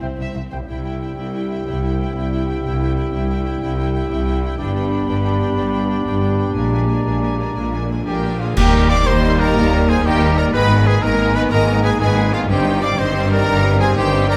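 This excerpt of a heroic adventure film score moves at 122 BPM in a straight 12/8, triumphant from the first bar, beginning in C major and lifting to Eb major at 8.6 s. A lush, vibrato-rich violin section carries the melody while a second, more focused violin line soars above it. A mellow clarinet, airy silver flute and sustained chords from a background horn section and clear trombones thicken the texture. A solo trumpet punctuates with stabs, and the viola section murmurs a very quiet, distant accompaniment. The bowed double basses sit up front beneath a cello section in the background, grounding the harmony. A cymbal swell, clash cymbals and concert bass drum with dark cymbals enter at 4.6 s, and the full band lands an accent on the key change before the chords darken through Abmadd9 to Cm/G, all set in a moderate scoring-stage reverb.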